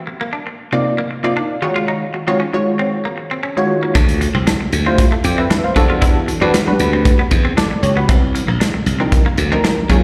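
Heard as a live gig through the venue's PA, with the light reverb of a recital hall, this is a funky, danceable cut of early-eighties boogie funk at 116 BPM in a straight 4/4. A clean, compressed semi-hollow electric guitar plays a riff from 0.1 seconds, shimmering with lush chorus and slapback echo. A dark, detuned sawtooth polysynth joins with an up-front comp featuring a filter pluck, a moving notch, chorus and slapback echo, over minor-eleventh chords such as Cm11 and Ebm11. At 4.0 seconds a bright, growly slap bass with a glassy edge arrives alongside an acoustic drum kit whose hi-hat, medium-tuned snare and punchy kick sit up front in a pumping small room.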